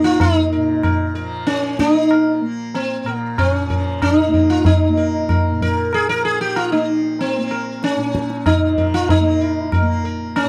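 In a straight 7/4 at 94 BPM, this introspective, meditative fragment of Hindustani classical music in raga Bhimpalasi on Bb sets a round, up-front, plectrum-plucked sitar melody with buzzing sympathetic strings over a bright, softly plucked tanpura drone that shimmers quietly beneath, while low-tuned, ringing tabla joins at 0.2 s, in a dry, close 1970s-style studio recording.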